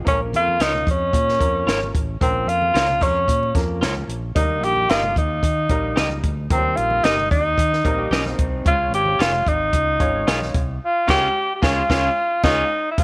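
Urgent and passionate, this 13-second excerpt of uptempo 1960s-style soul moves at 112 BPM in a straight 4/4 over Bbm, Eb and Db chords. It is led by an up-front, breathy tenor saxophone with vibrato and tape echo, backed by a compact cocktail drum kit with a high-tuned snare, punchy kick and dark cymbals, and a punchy fingered electric bass. A bright, slightly detuned upright piano comps throughout while a twangy electric guitar at the edge of break-up plays stabs. A dark, lo-fi guitar through a small old amp sits in the background, touching in at the start and then playing a riff from 7.9 to 12.6 s. Very quiet low-tuned congas and a soft-attack saxophone section round out the band, with the section adding a second line briefly around 3 s and again near the close, all set in studio reverb.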